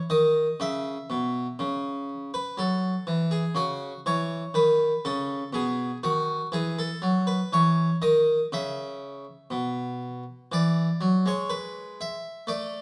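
This is a classical, baroque-style suite movement for solo harpsichord, cut from a longer piece, with a flowing, dance-like mood and a freely pushed and pulled rubato feel in four. The harpsichord is a full-bodied Flemish-style instrument with two sets of strings, giving a plucked, mid-forward tone that sits up front in the mix and ranges from B2 to E5. It plays alone throughout the 12.8 seconds. The harmony moves from C#m through F#5 and B before settling on E5 and then E at 10.5 seconds. A stone room's reverb surrounds the instrument, and the listener seems placed further back in that resonant space.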